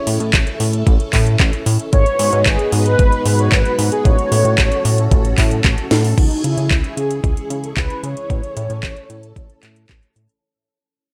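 The recording sits in a light digital ambience, with a gritty, thumpy electronic kick pressed up front and a glossy chorused synth bass, built from pulse and sawtooth waves with a plucky filter, sharing the foreground. This nostalgic, danceable italo disco excerpt, cut from a longer piece, moves in a straight four, its harmony passing from A through G#m7 and F#m/A to C#m before returning to A. A mellow synth brass carries the melody, its detuned sawtooth tone round and dark, coloured by chorus, vintage 12-bit sampler grit and digital delay, while a lush string machine holds sustained chords under an ensemble chorus. The house drum kit brings a cracking snare, metallic hi-hats, handclaps and crash cymbal, overdriven and re-recorded in a large room, with a drum fill at 5.9 seconds. From 6.2 seconds the track fades out, the brass melody stopping at 9.9 seconds as the strings and drums carry on to the end.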